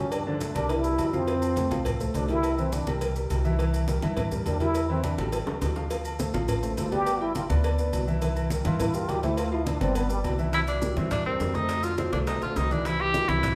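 Sunny and lively, this Afro-Cuban jazz excerpt in C mixolydian moves at a brisk 207 BPM in straight 4/4. A bright, close-miked trombone with a plunger mute takes a wah-wah solo over a woody upright piano, a dark, thumpy pizzicato upright bass, and a percussion bed of low-tuned congas, round cowbell and bongos, distant ringing agogo bells and timbales, and grainy maracas, with a drum fill at 5.2 seconds. At 10.5 seconds a warm, vintage tenor saxophone with light vibrato steps up front for the melody, all played live in one room with a wet, large studio reverb.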